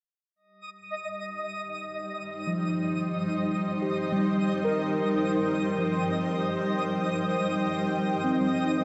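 A twinkling, sparkling granular texture opens this peaceful ambient excerpt at 0.6 s, its mellow FM tones carrying an octave-up shimmer. At 1.2 s a cloudy, blurred granular pad swells in with sustained, slowly evolving chords, bright and up front, followed at 2.5 s by muted, felt-like synth keys playing dark, intimate arpeggios through chorus and a diffuse delay. The excerpt floats in free time within a vast, echoing cathedral reverb, giving it a warm, weightless calm.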